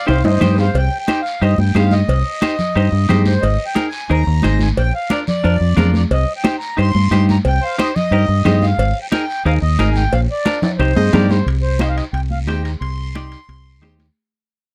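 The deep dub fingered electric bass anchors this driving, danceable cumbia in C minor, sitting round, dark and up front from 0.1 seconds at a brisk 179 BPM in straight 4/4. Above it, a reedy accordion with slow beating carries the melody, while a clean, picked semi-hollow electric guitar adds compressed, hollow-body accompaniment. The percussion bed combines high-tuned, thin-skinned congas heard close and dry, ringing metal-shell cowbell and timbales in a small room, and a raspy guiro set far back in a large room. A punchy, forceful trumpet with light vibrato breaks in briefly as a second line at 7.6 and 11.0 seconds. The harmony cycles through Cm, Absus2 and Bb, with drum fills opening the piece and returning near 10.6 seconds before a fade-out begins at 11.5 seconds, all captured as a dry, close 1970s-style studio recording cut from a longer piece.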